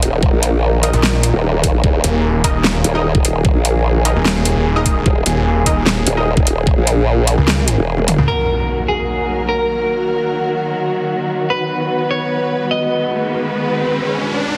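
A half-time 149 BPM pulse in 4/4 drives this menacing, heavy wobble dubstep excerpt in Eb minor, where a knocking electronic kick and a dubstep drum kit with a huge snare and metallic hats hit up front beneath a formant-sweep wobble bass, a growling distorted saw bass, and bold, nasal orchestra-hit-like synth stabs with tape echo. Dark, woody studio strings hold sustained, sidechain-pumped chords throughout, and after the kick drops out at 7.9 s a drum fill leads into a new section at 8.3 s. There a clean, picked electric guitar carries the melody over Ebm, B and Abm7 chords, framed by an electronic impact and a riser that closes at 14.6 s, all under heavily compressed, radio-like sound.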